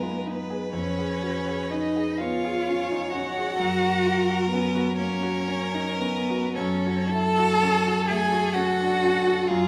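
Classical chamber music for piano quartet, this elegiac, solemn fragment of a slow romantic movement unfolds in an uneven, rubato 6/8, with a distant, smooth violin singing the melody over a focused second violin, an up-front cello whose expressive line glides with portamento, and a vintage-toned grand piano with deep bass, all bowed strings shimmering with vibrato inside a reverberant recital hall.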